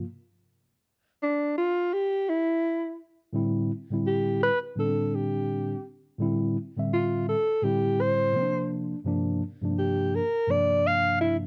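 Hip hop at 84 BPM with a swung sixteenth-note feel and a warm, relaxed mood, this short cut from a longer piece sets a clean tine electric piano, heard through its built-in speakers with plate reverb, beneath a mellow, jazz-style alto saxophone solo that enters at 1.2 s with subtone, vibrato, soft attacks, scooped notes and a smooth top, moving over Am11, Fmaj13/A, C9sus4 and Gm7, while the recording carries the worn, warbling pitch drift of old cassette tape.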